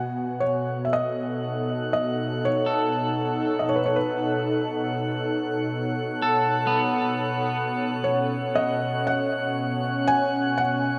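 An ambient piece, peaceful and weightless, moving at a slow, straight pulse over a single B7 chord in this brief section cut from a longer work. A felt-muted upright piano carries the melody from the start, its soft, mellow tone intimate and short in sustain, with audible action noise and a diffuse ambient delay trailing behind it. Alongside it, a vintage analog pad of detuned sawtooth waves holds sustained chords up front, smooth and warbling through chorus, with a filter sweep running across its full length. At 0.7 seconds a glassy texture of drifting sine overtones fades in with its own chorus and built-in reverb, and at 2.7 seconds an electric guitar at the edge of break-up adds picked, scooped arpeggios treated with vibrato and diffuse delay. The whole mix sits in a huge, wet ambient reverb with a very long decay.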